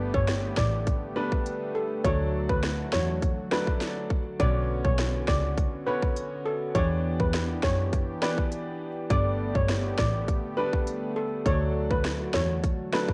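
A straight 4/4 dancehall groove at 102 BPM drives this tough, sultry fragment, with an overdriven, up-front electronic drum kit of tight kick, sharp snare, rim click and smooth hats setting the pulse under a dark, intimate bowed double bass, a clear but boxy concert grand piano and a sawtooth analog pad with chorus, both pumping against the beat, while a shimmering, metallic steel pan carries the melody through analog delay over a Gadd9, D, Bmadd9, Em7 cycle, all soaked in the worn feel of a home cassette recording with a small room and faint mains hum.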